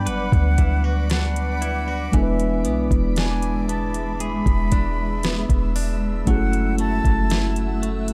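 A slow, romantic contemporary R&B excerpt at 58 BPM opens with an airy concert flute melody with vibrato and tape echo, over a mellow tine electric piano, a blurred, evolving granular cloud pad with its own reverb, picked, twangy arpeggios from a direct-recorded clean electric guitar, and a very quiet, bell-like celesta. An electronic, smooth R&B drum kit with soft kick, deep snare and metallic hats joins at 0.1 seconds, sitting up front beside a boomy, sine-toned 808-style bass, as the chords move from Gmaj7 to E7 and on to F#m9. The production is dark, warm and dry.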